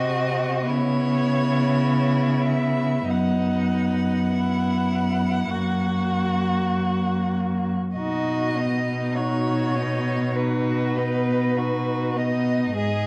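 Classical slow romantic movement for string quartet, a serene, lyrical fragment that breathes with a flexible rubato pulse. One bowed violin sings the melody with focused vibrato, while a second violin weaves an expressive inner line with portamento, both set back at a distance; a smooth, even viola sits close beneath them, and an up-front cello anchors the bass with a rich tone and a smooth top. The dark, warm production places the quartet in a moderate recital hall reverb, and the harmony drifts from a rootless G#7 through C#m7, B/F# and F# before settling on the home chord at 8.0 seconds.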